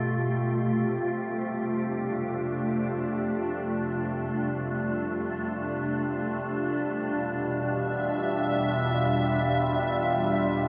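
Weightless and serene, this ambient fragment, cut from a longer piece, drifts in an enormous, wet reverb with a decay of 8.9 seconds. Up front, a glassy, ethereal FM pad holds mellow sustained chords with slow attacks and long releases, thickened by ensemble chorus and its own reverb, moving from G9 to F6 at 0.5 seconds and settling on Em7 at 6.9 seconds. Far in the background, a bowed studio double bass section fades in gradually across the whole passage, its low notes carrying an expressive vibrato and a distant, warm tone. An analog drone enters at 1.3 seconds and fades in as well, an evolving blend of detuned sawtooth, pulse and triangle waves with pulse-width modulation, ring modulation and chorus. Its slow-attack, sustained tones with long releases join the pad, adding a shifting warmth to the hovering haze.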